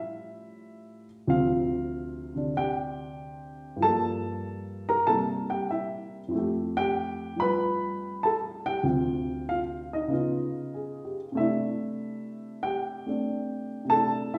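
A dark, woody upright piano plays solo jazz with a relaxed, swinging feel, its mellow, short-sustained tone sitting up front with audible action noise inside a reverberant recital hall, moving from an opening A7b13 through Dm7, Gm9, C7, Fmaj9 and Db9 before settling on C69 at 11.4 seconds in this brief excerpt from a longer piece.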